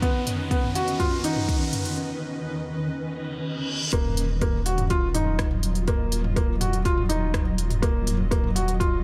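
A straight 4/4 pulse at 123 BPM runs through this intimate, hypnotic piano and strings electronica fragment in Eb minor, cut from a longer piece. A deep electronic kick and a deep house kit of smooth hi-hats, rim clicks and toms sit in studio reverb, with the kick the more prominent of the two. Up front, a felt-muted upright piano repeats a soft, short-sustained riff with audible action noise and tape echo. Beneath it, a cloudy granular pad holds detuned, blurred chords in its own reverb and pumps to the sidechain, moving from Badd9/D# to Ebmadd9. The opening build-up carries a riser, a break at 2.0 seconds and a reverse cymbal, then at 3.9 seconds the drop brings in a round, nasal, dark analog bass on a low Eb, pumping with the pad, all set in a light room reverb.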